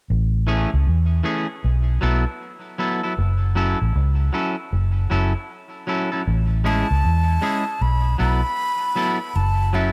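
A vintage, foam-muted fingered bass opens this laid-back, serious reggae excerpt at 78 BPM with a round, punchy tone, joined at 0.5 seconds by a bright, twangy clean electric guitar with tape echo over Amaj7, B7sus4 and F#m7, before a breathy, hollow silver concert flute with tape echo enters at 6.7 seconds to carry the melody in a swung, lightly reverberant studio room.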